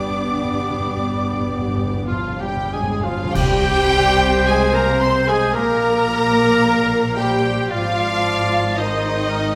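A lush, reverberant scoring-stage sound frames this short, melancholic cut from a slow romantic orchestral movement in C minor, moving in a rubato 4/4 at roughly 46-57 BPM. A rich, expressive violin section carries the yearning melody with lush vibrato, while a clear, focused second violin section, a hollow, very quiet flute section, a distant clarinet and a cor anglais weave secondary lines in the background. Violas with portamento supply accompaniment, a roomy French horn section holds sustained chords, and close, bowed cellos and focused, bowed double basses anchor the bass. Timpani with medium mallets play a fill through the opening 3.3 seconds and fall silent at 5.0 seconds, and a mellow, very quiet trumpet adds stabs from 2.1 seconds. At 3.3 seconds the music shifts to a new section marked by a full-band accent, with bright clash cymbals and concert bass drum sounding until 5.5 seconds, as the harmony moves from G through C5 and Gmadd11/Bb to Fm/Ab.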